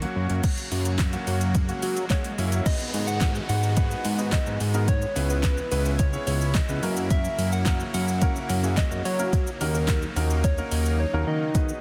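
A dense, heavily limited modern master with a digital ambience frames this confident, bittersweet dance-pop excerpt at 108 BPM in G# minor, cut from a longer piece. Up front, a thick, detuned sawtooth analog bass pumps with sidechain beside a smooth electronic R&B kit of soft kick, metallic hi-hats, handclaps, shaker, crash and a fat, softly clipped snare, while an intimate grand piano with audible action noise and a lush supersaw pad in the background pump beneath a round, keys-like FM lead with chorus and a vintage warble. Faint electronic swell and downlifter effects appear between 1.8 and 7.1 seconds, the chords move from F# through G#m7, C#m7, F#7 and D#m7, and a brief silence falls at 11.0 seconds.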